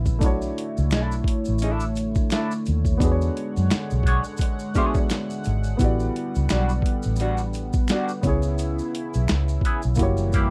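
A dry, close 1970s-style studio sound frames this soulful, smooth neo-soul R&B groove at 86 BPM in B minor, where a gritty, thumpy boom bap sampler-style drum kit and a dark, round, foam-muted fingered electric bass sit up front, a baby grand piano with audible action noise accompanies while a shimmering, retro chorused pulse-width pad with phaser holds the chords from Bm11 through E13 and A13sus4, quiet maracas and finger snaps add texture, and a clean, picked electric guitar with wah joins at 0.9 seconds.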